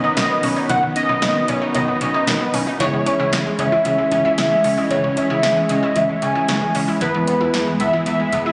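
A velvety, full-bodied synth lead with vibrato and chorus sits up front, carrying the melody over an 8.5-second synth-pop clip at 114 BPM that feels bright and nostalgic, moving from Badd9 to C#m and then E. Beneath it, a lush, wave-folded unison pluck spins delayed arpeggios, a detuned funky polysynth comp and vintage string-machine violas hold the background, and a snappy FM bass with a metallic attack anchors the low end. A dry analog drum machine with a deep kick, punchy snare and metallic hats enters at 0.2 seconds, and the whole mix carries a concert-hall ambience with a muffled, phone-in-the-room top end.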